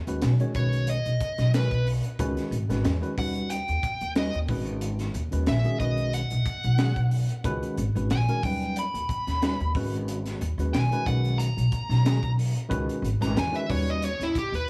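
A lightly swung 4/4 groove at 91 BPM carries this slick, intense stretch of electric jazz fusion, cut from a longer piece. The crisp acoustic drum kit pumps in a small room, with a high-tuned snare, punchy kick and hi-hat, and a saturated, gritty edge. Underneath, a woody, thumpy upright bass with gut strings sits up front, plucked pizzicato in a low register, while a worn, slightly out-of-tune tine electric piano comps through its built-in speakers with light overdrive. From 0.6 seconds a dark, smooth overdriven lead guitar takes a picked solo above the band, running from E4 to B5 over a cycling progression that moves from G#m7 through Badd9 and C#m11 to a tense D#7alt. A small room reverb ties the sound together, keeping the ensemble close.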